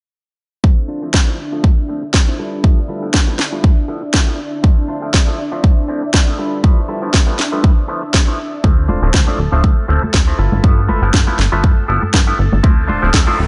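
Sensual and nostalgic, this filtered disco house excerpt from a longer piece rides a swung 4/4 groove over a Dm7 to G13 chord cycle, with a filter sweep running through its whole length. From 0.6 seconds a percussive, nasal clav played clean through a combo amp and a lush string machine ensemble with a sub octave, slow attack and ensemble chorus hold the harmony, both pumping against the kick under a low-pass filter, the clav also colored by phaser. An overdriven, punchy electronic kick sits up front, joined moments later by a cracking, overdriven snare, while a compressed, twangy clean electric guitar picks a riff roughened by vintage 12-bit sampler grit. At 8.6 seconds a funky analog bass with a fast-attack filter pluck arrives up front, alongside tube shaker and congas played with hard hands, close and dry in the background, both filtered and pumping. A faint electronic riser enters at 12.9 seconds, all heard in light digital ambience with a softly rounded top end.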